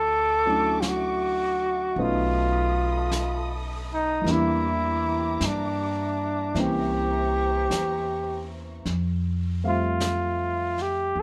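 A warm, up-front flugelhorn sings a tender, romantic melody with vintage vibrato in this swung jazz ballad cut from a longer piece, cushioned by a lush, dark bowed string section that falls away at 8.8 s as the harmony shifts to Fmaj9, while a woody pizzicato upright bass, a long-sustaining baby grand piano entering at 0.5 s and a brushed snare-and-hi-hat kit with a rolled-off top settle in beneath a light reverb.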